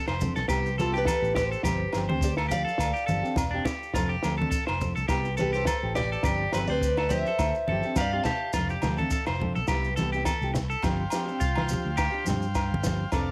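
A full-bodied jumbo steel-string acoustic guitar carries the melody from 0.8 to 8.5 seconds in this joyful, carefree highlife guitar band piece in G mixolydian at 104 BPM with a lightly swung 4/4 feel, set over twangy, slightly broken-up electric guitar arpeggios with tape echo, a round, amped fingered bass, fingerpicked nylon-string guitar with finger squeak, a dark, compact cocktail drum kit with a punchy kick and high-tuned snare, ringing agogo bells, hard-hand congas and distant, grainy maracas, before a clean electric guitar solo and buzzy vintage combo organ chords with light vibrato arrive at 10.8 seconds, all in a lightly reverberant home recording on cassette.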